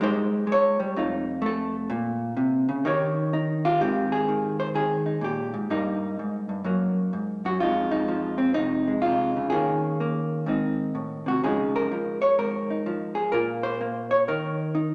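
A vintage hollow-body electric jazz guitar opens alone on an Abmaj7 chord, its dark, clean, picked tone placed up front as it moves through a relaxed, swinging progression of F7, Bbm and Eb7. From 3.8 seconds the solo drifts into a new passage of richer harmonies, including Abmaj9, Gb and Dbadd9, before settling on a bare Bb5 and then dropping the chords altogether at 14.3 seconds. The short excerpt sits in a wet, large studio reverb with a soft, rounded top end.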